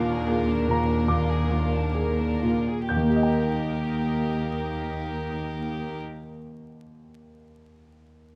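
Lush and passionate, this short, rubato romantic fragment for piano and orchestra slows through its opening phrase as a clear, up-front grand piano carries the melody over floating, sul tasto violins and violas and an intimate, lightly vibrated cello section holding a low Eb, the strings falling away at 6.0 seconds while the piano rings on to 8.4 seconds amid light reverb and vinyl crackle.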